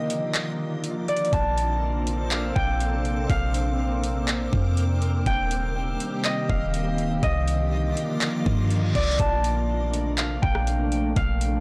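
A ringing, fingerpicked concert harp melody with low-pass filtering and digital delay opens this blissful, dreamy cloud-rap piece in Bb major at 122 BPM in half-time, drifting over ethereal FM pad chords with chorus and sidechain pumping and a reversed, detuned granular swell. A smooth R&B kit with a knocking kick and metallic hats arrives at 0.1 seconds, and a deep, boomy sine 808 bass joins at 1.3 seconds under chords moving from Bbmaj9 through Eb6 and Cm11. A reverse cymbal at 8.6 seconds leads back to Bbmaj9, and the whole mix is heard through a dry, blown-out, overdriven recording.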